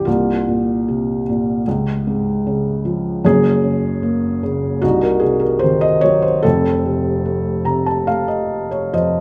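Classical solo piano in a lyrical, reflective vein, this short passage of about 9.2 seconds is cut from a longer piece and moves at a rubato 75 BPM in 4/4. A single felt-muted upright piano carries everything, spanning F1 to Bb5 with a soft, dark, intimate tone from its thick felt, and the mechanical action noise is clearly audible up close. The harmony drifts from Fsus4/C through Db, Gb and Cdim before settling on F, giving the phrase a reflective, wistful quality. From 7.3 seconds the piano adds a fill that carries the passage to its close. The instrument sits up front in a moderate recital hall reverb, and the sound stays natural and mellow throughout.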